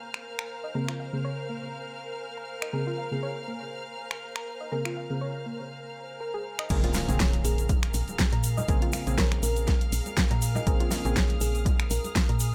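Hollow, flute-like pad chords, a mellow chorused stab, a biting violin section, a blurred granular cloud pad and a dark, round arpeggiated pluck with tape echo all pump together in a late-night deep house excerpt in Bb minor at 121 BPM, riding a Bbm9 chord over a swung kit of finger snaps, hi-hat, fat snare and crash, until the drop at 6.7 s brings a very quiet impact, a punchy electronic kick, a woody saturated FM bass, a grainy tube shaker and soft-handed congas, with a sparkling, bell-like FM electric piano melody entering in the background at 7.4 s.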